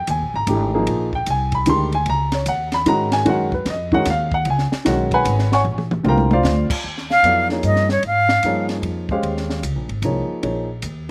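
A dark, mellow baby grand piano and a woody, pizzicato upright bass open this short modal jazz excerpt, with a compact cocktail drum kit joining almost at once. The feel is an open, spiritual swing in three, built over suspended ninth chords. The piano sits up front with a natural, short-sustained tone and a slapback echo on its comping. The bass is also forward, its steel strings giving it a warm acoustic body. The drums sound smooth and shadowy, with a high-tuned snare, a punchy kick, ride, hi-hat, crash and toms; they play a fill at 5.6 seconds, leading into a new section. There, an airy metal jazz flute briefly takes the melody from 7.1 to 8.7 seconds, up front and expressive with a soft attack and vibrato, in a dry outdoor sound with little reverb.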